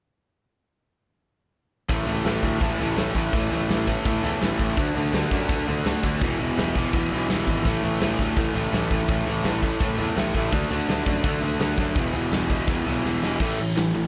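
A punchy, up-front acoustic rock kit, its snare and crashes ringing in a stone room, drives this upbeat, energetic punk rock excerpt at 167 BPM from 1.9 seconds, beside a cranked, overdriven stack guitar riff, a compressed, warm overdriven second guitar and a growly fuzz bass tucked in the background, all pounding through A5, D5, E, D and E5 chords with little reverb until a drum fill at 13.0 seconds.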